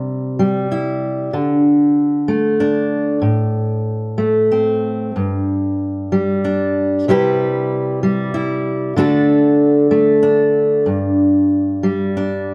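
In a rubato 6/8 lilt, this pastoral, gentle folk fragment cut from a longer piece features a solo fingerpicked steel-string acoustic guitar, up front with audible finger squeak, moving from C through D5, Am, G5, Cmaj7 and D back to G5 across 12.5 seconds inside a moderate concert hall reverb.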